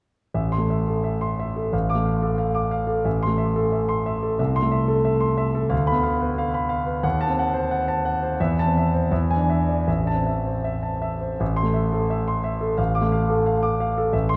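In a rubato 2/4 that drifts between 75 and 91 BPM, this romantic character piece for solo piano sets a passionate, stormy mood in A minor, tuned slightly high at A4 = 441 Hz. The concert grand sits up front with a natural, warm tone and deep bass, ranging from A1 to D6 as the harmony darkens through a D#dim7 and an E7 before settling back on A minor around 9.9 seconds. A long cathedral-like reverb from the church or hall blooms around every phrase, and the passage is cut from a longer work, closing at 14.4 seconds.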